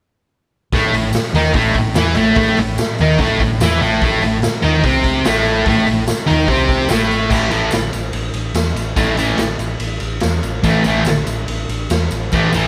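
A thick, double-tracked fuzz guitar riff kicks off this gritty, swaggering garage rock excerpt at 0.7 seconds, bright and up front, alongside a round, dark hollow-body bass and a raw, saturated drum kit with a punchy kick, medium-tuned snare, hi-hat, ride and crash. A jingly tambourine joins close and dry in the background at 1.1 seconds, while the band sounds like it's playing live together in a moderately reverberant stone room. The harmony shifts from A minor to a bare A power chord at 7.3 seconds, driving the straight four-beat groove on until the cut.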